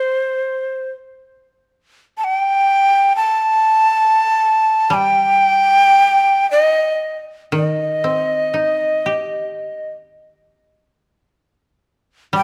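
A breathy, reedy shakuhachi carries the melody up front from the start, its straight tone and soft attack setting an austere, meditative mood in free time. At 4.9 seconds a mellow, woody koto played with fingerpicks enters quietly beneath it as accompaniment, and both continue to the end of this fragment of a longer piece of Japanese chamber music. A moderate recital-hall reverb surrounds the duo.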